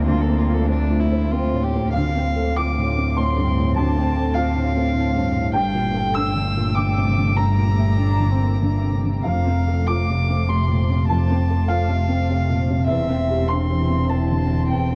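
In a rubato 3/4 at 98 BPM, this melancholic, reflective neoclassical excerpt in D minor drifts through F/D, Dm7, Gmadd9, F and Cadd9/E, with a felt-muted upright piano up front, mellow and intimate under an ensemble chorus, carrying the accompaniment across the full 14.9 seconds. A floating, sul tasto solo violin with tape echo sings the melody over a woody cello second line in the background, colored by vibrato and portamento, while a bowed double bass sits close and dark beneath. The whole mix is dreamy and cassette-tinged, soaked in a huge ambient reverb.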